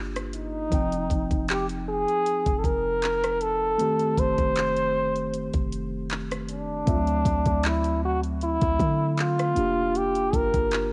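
A French horn with a straight mute carries the melody up front from 0.3 seconds, its nasal, brilliant tone shaded with vibrato and tape echo in a classical-style solo over this moody, late-night contemporary R&B excerpt at 78 BPM in 4/4 with a light sixteenth-note swing. A mellow tine electric piano plays accompaniment through Gm7, Fm7, F7 and D7 chords from the start, alongside a deep, boomy 808-style sine bass with a fast attack and decaying notes. An electronic R&B kit enters at 0.2 seconds with a knocking kick, hi-hat, rim click and handclaps, and the horn, piano and drums carry a cassette-tape tint within a homely recording touched by light reverb.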